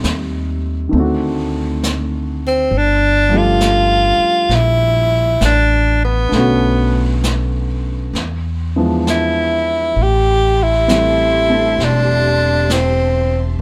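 Swung eighths in a slow 4/4 carry this tender, romantic jazz ballad, a short section lifted from a longer piece, with brushes on snare and hi-hat from a vintage kit sitting softly mid-forward beneath a woody, thumpy pizzicato upright bass on gut strings. Up front, a breathy, bright tenor saxophone sings the melody with light vibrato and a punchy edge, while an intimate baby grand piano accompanies, its action noise audible, over changes moving from Am7b5 and D7b9 through Gm9 and E7b9 to Am7. At 10.0 s a lush bowed string section enters with soft-attack sustained chords in the background, all set in a moderate studio reverb.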